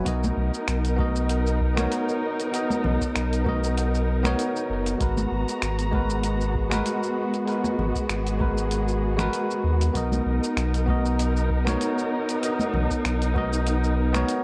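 A bell-like, barky tine electric piano with delay sits up front over muted, veiled strings, a round sub bass, gritty sampler-style finger snaps, hi-hat and shaker, a deep electronic kick and bright congas in this blissful, smooth sunset chillout excerpt at 97 BPM with a light 16th-note swing in B major, moving from Bmaj7 to G#m9 at 5.0 seconds and back at 10.0 seconds under light reverb and the warbly pitch drift of worn cassette tape.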